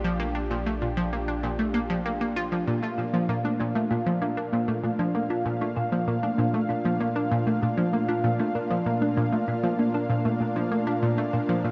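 Cosmic and expansive, this excerpt of sequencer-driven ambient space music in Bb major moves at 97 BPM, with a thick, nasal unison pad holding sustained chords up front, a bright, detuned analog pluck playing a riff through chorus, delay and shimmer reverb, a deep sine sub bass sounding only until 2.6 s, and a dark, tine-like thumb-piano-like synth pluck entering at 2.7 s with cassette-tinged arpeggios in the background, the whole piece set in a huge wet reverb with a 7.4-second decay.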